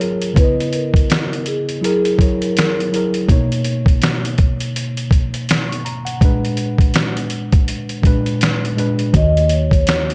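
A gritty, overdriven sampler-style drum kit sits up front with a thumpy kick, fat snare, hi-hat and finger snaps, giving this cosy, dreamy lo-fi hip hop fragment its swung 82 BPM pulse in 4/4. A worn, slightly out-of-tune tine electric piano, carrying a cassette-tape character, holds the accompaniment through warm chords from C#m9 and F#9 through Bmaj9 and A#7b9 to D#m7. A soft-mallet vibraphone with slow motor vibrato and tape echo rings out a short, band-limited melody from 0.4 s, returning at 9.2 s just after a dark, foam-muted electric bass enters on a round low note at 9.1 s, all inside light digital reverb.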